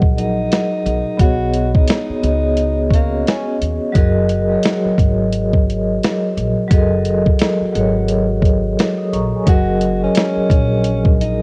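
A breathy, subtoned tenor saxophone carries the melody in this mellow, nostalgic lo-fi hip hop excerpt in F# major at 87 BPM with a 16th-note swing, its scooped, softly filtered notes drifting over F#69 and B69 chords until 3.6 seconds and returning at 9.5 seconds. Beneath it, an up-front vibraphone rings with a medium motor vibrato and boxy, cassette-tinged color, while a woody, growly pizzicato upright bass anchors the low end. A gritty, compressed sampler-style drum kit with a thumpy kick and medium-tuned snare sits prominently in the small-room mix, giving the whole home-recorded tape a dusty, intimate feel.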